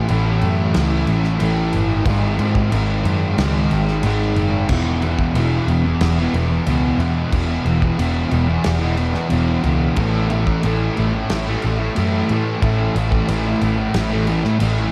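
A straight 4/4 pulse from a loose indie drum kit, with its medium-tuned snare, tight kick and crash cymbal, carries this dreamy, blissful stretch of shoegaze and dream pop rock, where a dark, double-tracked fuzz guitar riff sits up front over a round, punchy, foam-muted picked electric bass, all soaked in a huge ambient reverb with a five-second tail as the harmony moves from A through G#7(no3) to E5 at 4.7 seconds and A5 at 10.0 seconds.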